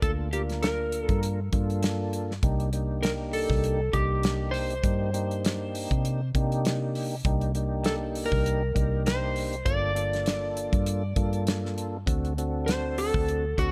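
This smoky, mournful soul blues excerpt opens with all four parts together at 100 BPM in 4/4, a straight-eighth groove in G minor carrying a light 16th-note swing. An electric slide guitar sings the melody up front, its dark, slightly broken-up tone moving between F#4 and D5. Beneath it, a mellow tonewheel organ supplies round, lightly overdriven chords through a slow rotary speaker and chorus vibrato. A vintage fingered electric bass, foam-muted and punchy, sits forward in the mix, while a dry 70s drum kit with a tight kick, medium-tuned snare, hi-hat and rolled-off top keeps time close at hand. The harmony moves from Gm7 to Cm7 at 2.4 seconds, returns to Gm7 at 9.7 seconds, and reaches D7 at 12.1 seconds, all in a nearly reverb-free room.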